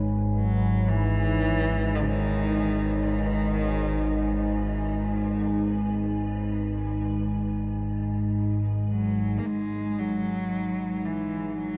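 A rich, bowed cello carries the melody up front from 0.4 seconds, its soft attack, vibrato and portamento giving an expressive single-player line that trails into a diffuse ambient delay. This is an unsettling, dark ambient drone in G# minor at 56 BPM in a straight 4/4. Beneath it, an analog drone holds the low register, evolving and up front with sawtooth and pulse-wave tones, pulse-width modulation, chorus and phaser. A deep, moody pad sustains chords built from detuned sawtooth unison, sub-octave sine and wave-folded, ring-modulated layers, while a reversed, swelling texture drifts dreamy and bright in the background and fades out over the first 9.5 seconds. At 9.4 seconds a gamelan-type bronze metallophone enters with barely audible arpeggios, ringing and shimmering from its paired tuning under padded disc mallets. The piece is cut from a longer work and sits in a vast, echoing cathedral reverb with a cassette-tape grain.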